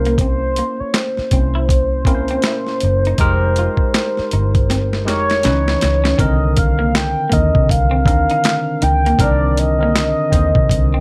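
A mellow, horn-like synth lead with chorus and vibrato carries the melody from the start over a worn, slightly out-of-tune tine electric piano and a dark, foam-muted fingered bass, joined at 0.1 s by a slightly broken-up electric guitar with harmonic tremolo in the background and a gritty, pitched-down boom bap drum kit with thumpy kick, high-tuned snare, hi-hat and handclaps. Together they give this introspective, soulful R&B and neo-soul excerpt at 80 BPM in C minor a swung 4/4 sway, moving from C7b9 through Fm11 and Dbm9 to Cm9, with a drum fill at 4.7 s.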